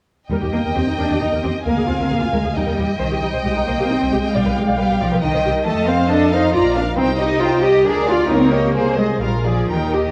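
From 0.3 s a rich string orchestra sets off together in a spirited, lively classical-period movement in triple time, the violins carrying a focused, vibrato-laden melody above a second violin line with a smooth top. Violas fill in beneath while a distant, even cello section and the double basses anchor the bass, with the cellos sitting most prominently in the blend and the rubato phrasing giving the music a flexible pull as the harmony reaches a Bb7 chord at 9.2 s. A moderate concert-hall reverb surrounds the ensemble, and the sound carries the worn, warbling pitch drift of old cassette tape in this passage cut from a longer piece.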